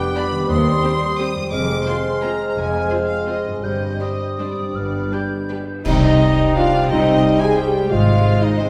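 A dark, sweeping orchestral ballroom waltz in C minor at 151-189 BPM with rubato, this excerpt opens on a rich, vibrato-laden chamber violin section carrying the melody, with a pure silver concert flute and a background clarinet on second lines, a mellow bassoon, a loose, vintage French horn section holding sustained chords and a ringing, thumb-plucked harp playing arpeggios; an intense second violin line, a smooth-topped viola section, an even double bass section and a very quiet, lush cello section soon join, bright cymbal swell, clash cymbals and concert bass drum enter at 3.6 s, and barely audible hard-mallet timpani mark an accent at 5.9 s, the ensemble set in a church-like hall's wet reverb.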